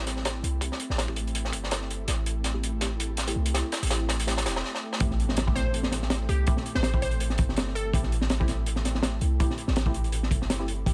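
The crunchy breakbeat drum kit stands out most, a small-room acoustic kit with a punchy kick and a high-tuned snare, its top rolled off and sitting up front in this dark, raw drum and bass and jungle excerpt with a swung sixteenth feel. Beneath it, a deep, boomy 808-style bass built on a sine with a noise layer hits with a fast attack and decays, starting at 0.0 seconds. A muted, detuned chord stab of sawtooth and square waves sits in the background with phaser, subtle chorus and dub echo, and its filter sweeps through the build-up that runs to 5.0 seconds, where drum fills and a brief break lead into the drop. A very quiet electronic impact lands as the drop arrives, and at 5.6 seconds a glassy, crystalline wavetable pluck with a sub octave, chorus and dub echo adds a bright melody until 8.1 seconds. Light reverb frames the whole piece over a single minor-seventh chord.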